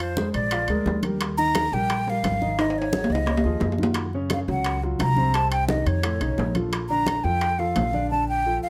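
A breathy, hollow jazz flute with vibrato and a soft attack leads this lively, danceable Afro-Cuban jazz excerpt at 174 BPM in 4/4. It sits up front over a concert grand piano with deep bass and short sustain, and a woody, thumpy pizzicato upright bass on gut strings. Ringing, close and dry metal-shelled timbales play alongside warm congas set in the background and tight, high-tuned vintage bongos that join at 0.2 s, with a drum fill from 2.6 to 4.0 s, all in light reverb as the chords move from Fm through Gbmaj7 to Bbmaj7.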